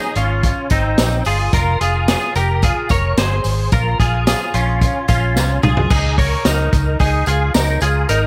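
A bright, twangy clean electric guitar opens with chorus-, delay- and plate-reverb-washed arpeggios, joined at 0.2 seconds by a round, foam-muted vintage bass, a muffled, gritty small-room drum kit with dark cymbals and a jingly tambourine in the background, carrying this nostalgic, youthful jangly indie pop fragment at 110 BPM through Abadd9, Fm and Bbm7 before a drum fill at 5.4 seconds leads to a Dbsus2 passage at 5.9 seconds.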